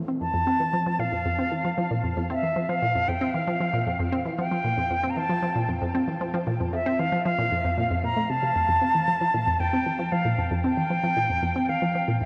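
Ambient piece in F major at 115 BPM in a straight 4/4, expansive and luminous, cut from a longer work. A juicy, squelchy resonant blip pluck repeats a riff up front from 0.1 seconds, with chorus and tape echo, while a close-miked concert flute carries an airy, expressive melody with vibrato from 0.2 seconds, bathed in shimmer reverb and tape echo. Everything sits in a huge, wet reverb of 7.9 seconds and a worn cassette character with warbly pitch drift, and the chords move from F5 to F at 8.6 seconds.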